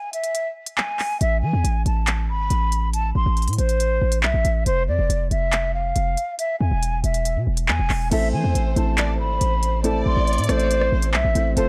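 A half-time drill groove at 139 BPM drives this ominous, cold hip hop excerpt in A harmonic minor, with the drum kit entering at 0.1 seconds and laying down crisp hats, handclaps, rim clicks and crash cymbal in an electronic, tape-tinged sound. A breathy concert flute carries the melody from the very start, its tongued, expressive line sitting up front with vibrato and lifted highs under a low-pass filter. After a brief opening break, a hard-hitting 808-style bass arrives at 1.2 seconds, punchy and heavy with a sine body, a noise layer and a fast, decaying attack, anchoring the progression through Am, Dmadd9/F and E. At 8.1 seconds the second section brings in a dark, mellow concert grand piano with deep bass and short sustain, filtered and vintage in tone, alongside a lush bowed violin section playing a smooth second line through tape echo. The production as a whole feels dark and warm, wrapped in studio ambience.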